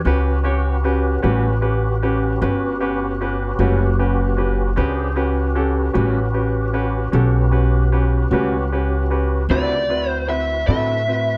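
Slow blues in 12/8 at 51 BPM, soulful and swaggering, where a fat tonewheel organ with key click and slow rotary swirl holds chords over a woody, pizzicato upright bass and a brilliant, intimate upright piano, a lo-fi, slightly broken-up electric guitar with harmonic tremolo joins at 1.2 seconds, and an overdriven lead guitar with plate reverb steps up front at 9.5 seconds as the harmony moves from A13 to D13 in this dark, dry cut from a longer piece.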